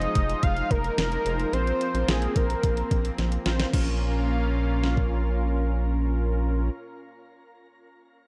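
Driving yet melancholic, this short synth-pop excerpt in Bb minor moves at 109 BPM in a straight 4/4, its chords shifting from Fm7 to Bbsus2 before settling on Bbm. A fat, detuned sawtooth lead carries the melody between Ab4 and F5 with vibrato, chorus, tape echo and shimmer reverb, falling silent at 3.2 s. Beneath it, brassy synth brass with a filter sweep and a smooth, warbling vintage pad hold sustained harmony through chorus and shimmer reverb, while a rubbery, hollow square-wave bass with a resonant filter pluck sits up front in the low register from F1 to Bb1. A clean 12-bit drum machine supplies a thumpy kick, fat snare, hi-hat and crash cymbal with a sampler-style, tape-warm character re-recorded in a large room, adding a fill from 3.2 to 3.7 s before stopping at 5.1 s. The production is dark overall, with light reverb and digital ambience.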